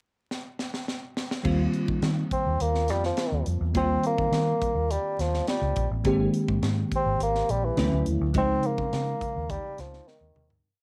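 Cassette recording and vinyl crackle color a booth with moderate ambience in this glossy, breezy piece of polished 1980s jazz-funk pop, where a crisp fusion drum kit with a high-tuned snare and tight kick opens with a fill at 0.3 s and settles into a sixteenth-note groove, a sparkling, bell-like FM electric piano with chorus, tremolo and plate reverb holds mellow chords with grace notes, a dark, foam-muted fingered electric bass weaves an agile syncopated line with chromatic approach notes, and a warm bassoon with light vibrato sits up front from 2.3 s, singing a classical-style, motif-based melody until the fade-out that begins at 8.3 s.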